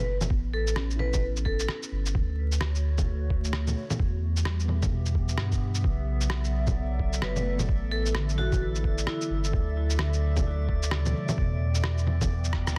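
This short future garage excerpt moves at 130 BPM in 4/4 with a swung sixteenth-note feel, carrying a rainy, ghostly mood over chords that drift from A5 through Dmaj7, Em and Bm7 to Asus4 and Em7. A deep, round sine sub bass sits up front with sidechain pumping. A thumpy, pitched-down electronic kick and muffled, tape-warm electronic bongos, shaker and rim click have a sampler-style, compressed character, with soft clipping on the snare and a drum fill at 12.5 seconds. Dark, muted felt-like synth keys play the accompaniment in the background, treated with chorus, pumping and dub echo. A metallic, ringing vibraphone struck with hard mallets plays brief melodic phrases at the start and again from 7.2 seconds, trailing dub echo. From 2.7 seconds a warbling, nostalgic, detuned pad spreads sustained chords with chorus, phaser and reverb, and a calm, glassy texture of drifting overtones joins at 6.5 seconds, all sitting in a dense, heavily limited digital mix dusted with vinyl crackle.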